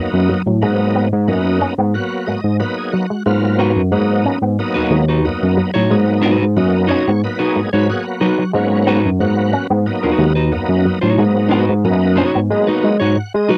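Driving and hypnotic, this funk clip sits on a straight 4/4 groove at 91 BPM in G# minor, holding on a G#m7 chord and opening on a break. A barky tine electric piano carries the bass line, lightly overdriven through a combo amp with ensemble chorus, placed up front in the mix. From the first beat a shouting tonewheel organ fires full stabs, with key click, chorus vibrato and a slow rotary speaker, and it adds fills at 1.9 and 6.6 seconds. Almost at once a twangy electric guitar joins with a clean, picked riff shaped by an envelope filter and a phaser. At 3.6 seconds a second guitar comes in with picked accompaniment at the edge of break-up, slightly gritty and up front, colored by harmonic tremolo. The dry, close recording has the feel of a 1970s studio with little reverb.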